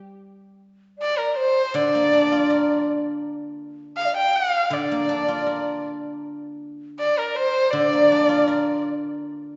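This short excerpt of Chinese traditional music for chamber ensemble is graceful and wistful, moving at 81 BPM in 2/4 with a free, rubato feel. A bright guzheng, plucked with fingerpicks, opens alone at 0.0 s and carries the accompaniment to the end, its silvery, ringing tone sitting up front. At 1.0 s a dark erhu enters with the melody, played by one bowed player close and intimate, with vibrato, portamento, a soft attack and an airy bow. At the same moment a breathy, mellow low xiao adds a second line from the background, its end-blown bamboo tone hollow and touched with vibrato. The erhu and xiao both stop at 8.8 s, leaving the guzheng to ring on. The ensemble sits in a reverberant recital hall, with the treble gently rolled off.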